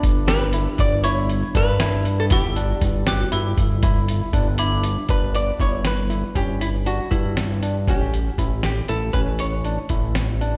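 Driving eighth notes at 237 BPM in 11/8 give this intricate progressive instrumental, cut from a longer piece, a straight but uneven pulse in G lydian, heard as a live gig through the venue's PA with recital-hall reverb. Up front, a compressed, muffled lo-fi sampler-style kit with a thumpy kick and fat snare anchors the groove, its kick and snare dropping out briefly at 4.6 s, while a thick, saturated sawtooth analog bass holds sustained low notes with a fast attack. A barky tine electric piano, bright and clean through a combo amp, spins arpeggios wrapped in slapback and tape echo. The miked archtop guitar carries the melody with a dark, picked hollow-body tone under the same echoes, and a vibraphone struck with hard mallets adds a metallic, airy second line with fast motor vibrato and slapback before stopping at 5.1 s. A grainy egg shaker sits close and dry in the background, and the harmony moves from G6 to A7 at 7.9 s.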